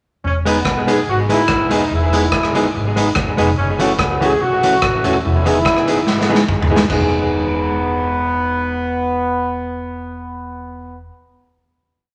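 A mellow, punchy horn section opens at 0.2 s with a loose, pop-style melody built from song-like motifs, alongside a woody, dark upright bass plucked in a walking line with chromatic approach notes. Moments later a clean hollow-body jazz guitar joins with an up-front off-beat chop treated with tape echo, and a raw garage drum kit sets a ska beat with a side-stick backbeat, its punchy kick and medium-tuned snare sounding gritty and saturated in a bright stone room with a rolled-off top. This short, cheerful and upbeat ska piece in E major moves at 144 BPM with a light swing, shifting from Emaj7 to F#m7 and back. A drum fill at 6.1 s closes the opening section, and the kit drops out at 7.0 s while horns, bass and guitar sustain a final chord. A large studio reverb gives the whole recording a wet, spacious sound.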